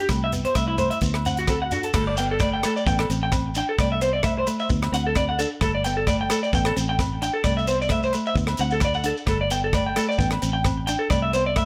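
A sunny highlife guitar band excerpt in straight 4/4, led by bright, twangy arpeggios from an up-front electric guitar through a small old amp with tape echo, over a dark, clean picked electric guitar with warbly pitch drift, a round, foam-muted fingered bass, a tight funk drum kit with crash, hi-hat, dry kick and rim click, grainy distant shekere and ringing agogo bells in the background, moving from C and D into a repeating Gsus2, Am7, Cadd9 and D cycle from 1.9 seconds under light reverb.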